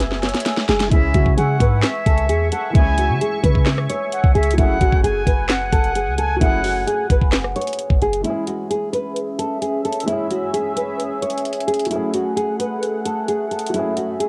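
Up-front trap drums open with a fill, their knocking kick, sharp snare, metallic hats, handclaps and rim clicks driving this dark, menacing half-time hip hop cut at 131 BPM in F# minor, while a deep, boomy 808-style bass holds the low end until 8.2 s. A thumb-plucked nylon-string guitar carries the melody with audible finger squeak and a full-bodied classical tone, and a bright, reedy flute with vibrato and analog delay adds a second line between 0.9 and 6.8 s. Underneath, a mellow felt-muted upright piano with audible action noise and a detuned sawtooth pad with chorus and filter swells fill out the F#madd9 and C#m harmony, the guitar, piano, pad and flute all coloured by cassette tape in a dry home recording.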